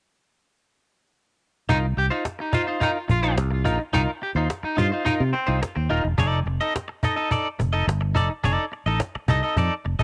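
A straight 4/4 funk groove at 107 BPM settles in after a short opening drum fill, as a snappy cajon with snares, played close and dry with soft hands, sets the pulse from 1.7 seconds alongside a round, up-front fingered electric bass. The mood is cool and hypnotic, sitting in C dorian on a Cm7 chord before moving to F13 at 6.2 seconds. A bright, twangy clean electric guitar adds picked, compressed accompaniment coloured by harmonic tremolo and a cassette-tape tint. Alongside them, a clear, vintage baritone saxophone with vibrato and tape echo carries a punchy second line in a pop style, dropping out at 5.6 seconds. The home cassette recording has little reverb, keeping the sound intimate and direct in this cut from a longer piece.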